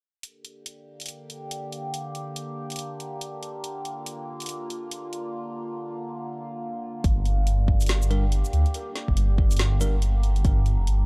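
A deep house drum kit opens this brooding, meditative deep dubstep excerpt at 0.2 seconds, its woody snare, dark hats and shaker set in a small room at 141 BPM, with a half-time feel and a swung sixteenth-note lilt in G minor. Moments later an overtone-sweeping drone settles in beneath it, holding sustained chords whose wave-folded, resonant tone is colored by chorus, phaser and its own reverb, with a slow attack and long release. At 7.0 seconds the piece shifts into a heavier section as a deep electronic kick and a dark, detuned saw bass arrive together; the bass sits up front, rumbling and saturated, with a beating, fast-attack sustain in its low register. From 8.1 seconds a bell-like tine electric piano adds bright, clean stabs trailed by dub echo, floating quietly over the low end. The overall production is dark and warm, with little reverb, keeping the focus on the bass weight and the shifting drone.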